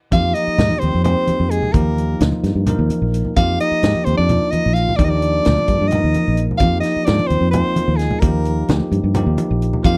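Funky and intense, this electric jazz fusion passage, cut from a longer piece, drives along at 259 BPM counted in eighths, in a straight 7/8 feel centred on F dorian. A clear soprano saxophone carries the melody up front with light vibrato and a slapback echo, while a breathy, whispered trombone sits in the background on a mellow second line. Bell-like tine electric piano supplies bright, clean accompaniment through chords moving from Fm9 to Eb, F7sus2 and Ebmaj7. Underneath, a fingered electric bass sounds dark, round and foam-muted, placed up front, as a tight funk drum kit with a high-tuned snare, tight kick and hi-hat pushes the groove. Congas with a thick-skinned, soft-handed tone fill in quietly behind, and the whole ensemble plays together from 0.1 to 10.0 seconds in a dry, close 1970s-style studio sound with little reverb.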